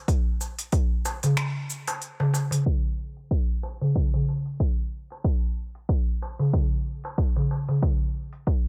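The recording is dry and close, with a dulled, filtered top end. It is a short cut from a longer downtempo piece, earthy and warm in mood, with a relaxed swing in the sixteenths. A punchy, overdriven electronic kick sits up front, paired with a softer drum kit of finger snaps, smooth hi-hats and shaker that sounds tape-saturated and re-recorded in a small room, its hats and percussion muted by low-pass filtering. A clay-shelled darbuka joins at 0.4 s, struck with hard hands, its natural skin giving a vintage, band-limited tone that stands up front alongside the kick. The kick drops out from 1.4 s, then returns as a filter sweep runs through the closing stretch from 2.7 s.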